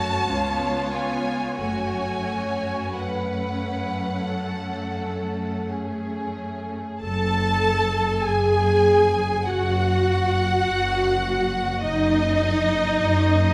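Yearning and elegiac, this slow romantic movement for string orchestra unfolds in F# minor at roughly 44-52 BPM in 4/4, with a rubato feel that lets the phrases breathe. The first violins carry the melody high in their range with a soft attack and expressive vibrato, while the second violins trace a smooth, even second line beneath them. The violas sit up front in the accompaniment, their rich, lush tone filling the middle of the texture. Underneath, the cellos give a focused, close bass line and the double basses add a deep, even foundation. All five sections play throughout the 13.5-second passage, which is cut from a longer piece and states the same opening section twice, moving from a C#7 chord to F# minor near its start. A moderate scoring stage reverb gives the ensemble a spacious, symphonic bloom.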